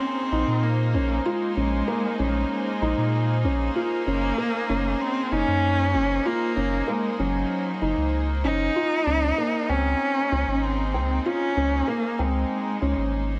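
Piano and strings electronica with a cinematic, moving mood, this excerpt sets a felt-muted upright piano riff, soft and dark with audible action noise, against sustained chords from an earthy, smooth-topped studio string section. Up front, a single bowed cello carries the melody with vibrato, portamento and a nasal, boxy voice, while a deep, round sine sub bass, also up front, enters at 0.3 seconds. Light reverb surrounds the progression as it moves from Bbm7 to Gb and then to Dbmaj7(no3).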